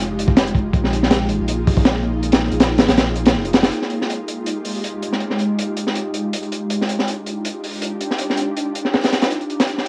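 Drum and bass with a jungle edge, this frenetic, raw excerpt from a longer piece opens on a drop where a deep, thick sub bass with tube saturation sits under an ethereal, airy pad of detuned, chorused chords until 3.7 seconds, while a crunchy breakbeat kit joins at 0.2 seconds. The acoustic drums sit up front with a dark, gritty, tape-saturated character, a high-tuned snare and a tight kick, and their top end is rolled off. From there the mellow pad carries the harmony from Fm9 through to Ebmaj9 over the drums, and the whole home-cassette recording carries vinyl crackle in a moderate studio ambience.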